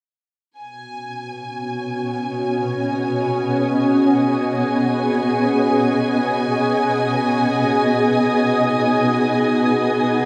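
Peaceful and warm, this short ambient fragment in free time opens with a lush bowed violin section holding a high note from 0.6 seconds, joined by an overtone-sweeping drone with detuned, moving harmonics and then an up-front shimmering pad of ethereal, octave-up granular chords, all bathed in a dark, wet reverb with a 7.4-second tail.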